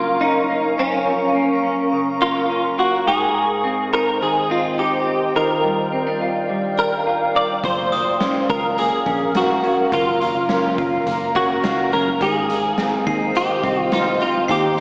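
Dream pop at 105 BPM in 4/4, this excerpt feels dreamy and blissful, drifting through Gbmaj7, Abmaj7 and Ebmaj9 chords. A bright, twangy clean electric guitar, recorded direct and sitting up front, carries the melody with ensemble chorus and diffuse ambient delay, while a hollow-body semi-hollow guitar picks arpeggios beneath it with subtle chorus and the same diffuse delay. A cloudy, blurred granular pad holds sustained chords high above, its slow attack and long release bathed in its own built-in reverb. At 7.6 seconds a round, foam-muted picked bass and a raw garage drum kit enter, the kit gritty and saturated with a punchy kick, medium-tuned snare and hi-hat under a rolled-off top. From 7.9 seconds a sparkling glockenspiel struck with brass mallets adds a bell-like, ringing texture in the background, trailed by diffuse ambient delay. The whole mix is soaked in a lush hall reverb over small room ambience, with a small-speaker sound that deepens its hazy character.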